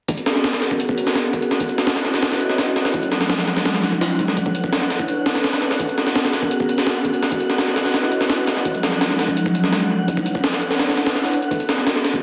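Dark and raw, this drum and bass excerpt in G# minor at 168 BPM pairs an up-front, gritty jungle sampler-style kit, overdriven and pitched up with a thumpy kick that drops out from 10.8 to 11.5 seconds, with an airy, breathy pad carrying chorused minor eleventh chords (G#m11, C#m11, D#m11, Bm11) and a faint wind-like tuned noise texture entering at 0.8 seconds, all set in a wet echo-chamber reverb under a dense, heavily limited master dusted with vinyl crackle.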